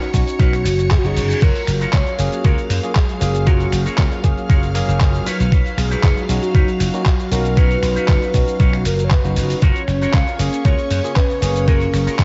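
A punchy, bright slap bass with tube saturation sits up front alongside a thumpy electronic kick in this sunny, groovy nu-disco excerpt in F# major at 117 BPM, moving through Badd9, F#maj7 and Bmaj9 chords. A round, octave-layered synth lead carries the melody through chorus, phaser and tape echo, over a barky tine electric piano and a lush string machine, both pumping with sidechain, while an envelope-filtered electric guitar plays a dark, clean picked riff. A gritty, overdriven sampler-style kit of snaps, claps, hi-hat and shaker adds texture, a reverse cymbal sweeps in from 0.8 to 1.4 seconds, and a cassette-tape haze with light digital reverb gives the home recording a dusty, rolled-off top.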